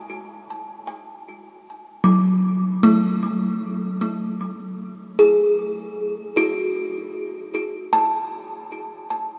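In a straight 4/4 pulse at 77 BPM, this weightless, serene ambient fragment, cut from a longer piece, features a lone kalimba, woody and bright with a hollow-box body and an up-front, airy thumbnail pluck, its short notes carried by delay into a vast, echoing cathedral reverb with a long 7.1-second tail and a cassette-tape grain, settling onto an F#madd9 chord at 6.0 seconds before fading out from 7.0 seconds to the end at 9.4 seconds.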